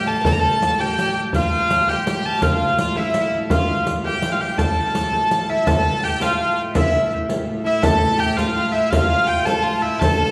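Rolling in 6/8 at 111 dotted-quarter beats per minute with a straight feel, this medieval dance feels ancient and driving, tuned slightly low with A at 436 Hz. A clear, airy hurdy-gurdy carries the melody up front between E5 and Bb5, its smooth, even wheel-bowed tone touched by tape echo. Beneath it a biting, intense fiddle plays a second line from E4 to Bb4 with light vibrato, while a dark, woody viola da gamba holds a ringing, boxy drone on A2. A deep, large frame drum enters at 0.2 seconds, and a riq with dark jingles joins at 0.3 seconds. The ensemble sits further back in a wet recital hall, the passage moves from its opening section into a second at 5.7 seconds, and it is cut from a longer piece.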